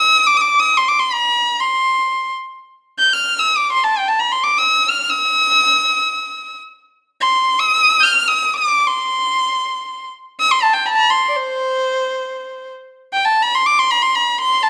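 Arabic maqam music in free time, passionate and stately, this excerpt from a longer piece features a solo violin in C maqam rast, one bowed player up front with a rich, focused tone, vibrato and a smooth top, ranging from C5 to G6 across its 14.7 seconds in a moderate recital hall reverb.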